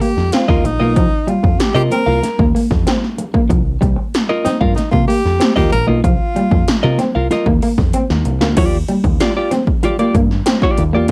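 A clear, close-miked tenor saxophone leads this sly funk excerpt at 95 BPM in C minor, playing a jazz-style solo with vibrato, a soft attack and scooped notes until 6.9 seconds. Beneath it, a twangy, slightly broken-up guitar plays the riff, a compressed clean guitar accompanies up front, and a dark, round, foam-muted overdriven bass holds the low end. Punchy 80s electronic pad drums with a gated snare and metallic hats sit beside distant, high-tuned congas, and after a drum fill the Cm11 groove moves to Ebmaj9 at 8.6 seconds, all in a home cassette recording with light reverb.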